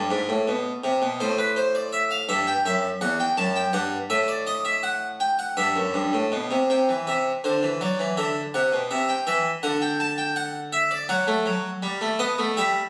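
A close-miked Italian-style harpsichord, strung with two sets of strings, carries this baroque-style two-part invention on its own, its plucked tone sitting dry, full and up front from E2 up to A5. The mood is contemplative and serious, moving at an unhurried 55 BPM counted in dotted quarters, with a straight 6/8 lilt. The first half, from 0.0 s, circles through shadowed harmony such as G#dim, Am and Em, touching on richer colours like Em11/F# and D#dim/A. At 6.7 s the second half opens onto lighter ground with C, Bm and Cadd9, then heads through F#m and arrives on a B7 that leaves the phrase hanging at 12.8 s, as befits a passage cut from a longer piece. A moderate, large studio reverb frames the instrument, and the sound was captured on a phone in the room.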